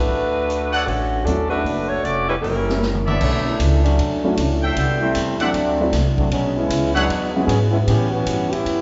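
Heard in a reverberant concert hall with a softened top end, this energetic big band swing excerpt opens with a mellow, vibrato-rich saxophone section carrying the melody over woody pizzicato upright bass, punchy acoustic drums, tight, vintage-toned trumpet stabs and a dark baby grand piano in the background. During a drum fill near 2.8 seconds the saxophones drop out, and a close-miked, brilliant trombone section takes a solo from 3.2 seconds to the end, its up-front line set against rich extended jazz chords.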